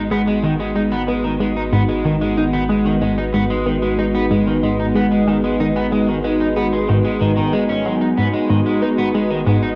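A straight 4/4 pulse from a tight, sawtooth sequenced synth riff with a filter pluck and tape echo drives this mysterious, cosmic fragment of ambient space music, while a swirling, detuned phased pad holds sustained chords, a round, deep analog bass sits far down in the mix, and a twangy, slightly broken-up electric guitar enters at 0.1 seconds with up-front picked arpeggios, the whole home cassette recording resting on a single G#m7 chord inside a wet spring reverb.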